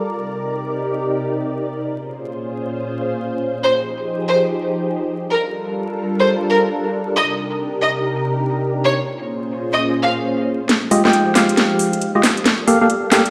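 A clear chamber violin section with light vibrato and dub echo carries a biting melody from 3.6 s over silky, phased string-machine chords in this skippy, late-night two-step UK garage piece in F minor at 136 BPM, before a build-up at 10.7 s brings a cracking garage drum kit with metallic hats and a hollow, chorused organ stab swept by a filter, all set in a large reverberant room with vinyl crackle.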